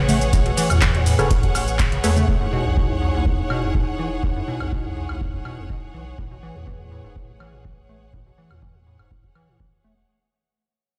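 A squelchy, resonant acid bass riff built on a hollow square wave leads this trippy, raw acid house excerpt at 123 BPM, its filter sweeping through the whole passage and colored by analog chorus and tape echo. Around it, a round sine sub bass with tube saturation and a nasal, detuned analog pad holding sustained chords both pump against the sidechain, while a clear, focused string section adds a bowed ensemble texture with vibrato. A deep electronic kick drives the straight 4/4 groove alongside a booming analog drum machine of handclaps, metallic hi-hats, shaker, toms and woodblock, both re-recorded in a large room. A muted, mellow dub chord stab with a filter pluck, chorus and tape echo appears briefly from 1.2 to 2.2 seconds. The harmony moves from Amaj9 to Emaj9 and back to Amaj9 at 6.2 seconds, and the whole passage fades out as if heard on a big sound system in a bare stone room.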